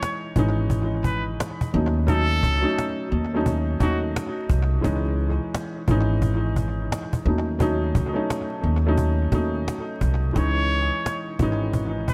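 A muted trumpet leads this reflective, tough boom-bap hip-hop excerpt, its nasal, breathy tone carrying vibrato and scooped notes in a jazz-style solo from 0.0 to 4.0 seconds before returning at 10.4 seconds, filtered and trailed by analog delay. Beneath it, a dark upright piano plays throughout, mellow and worn, slightly detuned, with audible action noise and a cassette-tape grain that keeps it intimate and close. A pizzicato upright bass enters at 0.4 seconds, thumpy and woody with steel strings, sitting up front as the strongest part of the mix. A cajon under soft hands supplies the drums, dry and close with faint snares, its hits touched by delay. The groove moves at 87 BPM in 4/4 with a 63% swing on the sixteenths, in C# minor, shifting between C#madd9 and D#m7b5 inside a small room, an echo-heavy mix laced with vinyl crackle.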